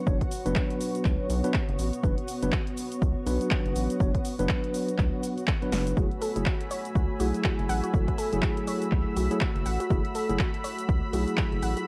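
Heard through a cassette-tape haze with light reverb, this short cut from a longer deep house piece sits at 122 BPM in F# minor, with a hypnotic, moody pull and a 58% swing on the sixteenths. A tine electric piano plays clean stabs through its built-in speakers, trailed by tape echo and pumping against the kick, while a cloudy, blurred granular pad drifts alongside it in its own reverb. A round, deep analog bass anchors the low end from F#1 to C#2, and an overdriven electronic kick sits up front beside a punchy analog drum machine of cabasa, handclaps, hi-hat and snare, its snare, clap and hats caught in a short room. After a drum fill at 5.7 seconds, the harmony moves from Bm/F# to F#m9 at 6.0 seconds, where a smooth, detuned sawtooth pad with chorus enters on sustained chords and a warbling, nasal pluck with 12-bit grit and tape echo spins arpeggios in the background. A silky, bright string pad holds a single high B5 under ensemble chorus from 6.2 seconds, thickening the mellow, moody wash through to the end.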